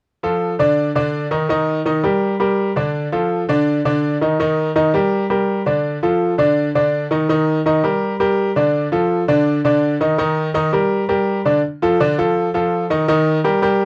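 A bright, woody upright piano plays alone from 0.2 seconds in this festive, danceable Latin passage at 166 BPM in a straight 4/4, moving between D3 and Eb5. It alternates Dm and Ebmaj7 chords, shifting into a new section at 11.6 seconds that ends on Eb, and it cuts off at 13.8 seconds. The piano sounds brilliant, polished and up front with long sustain, caught in a dry, close 1970s-style studio sound with little reverb.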